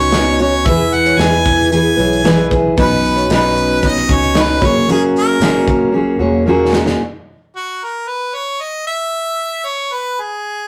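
A clear, punchy harmonica carries the melody up front from the first moment, its pop-style line marked by scooped notes and light vibrato, over a carefree, easy-going acoustic pop groove at 114 BPM in a straight 4/4. Beneath it, a full-bodied jumbo steel-string acoustic guitar fingerpicks the main accompaniment, while a second, darker and very quiet fingerpicked guitar adds high arpeggios. A soft, flute-like tonewheel organ holds sustained chords through a slow rotary speaker with a touch of key click, and a round, foam-muted electric bass anchors the low end with an amped, dusky tone. A modern studio drum kit with a punchy kick, medium-tuned snare and shaker keeps time, closing the first passage with a fill at 5.9 seconds. The whole band drops out by 7.0 seconds, leaving the harmonica alone until the cut at 10.7 seconds, and the rough rehearsal-room sound, with its wet reverb and warm saturation, gives the clip a loose, homespun feel.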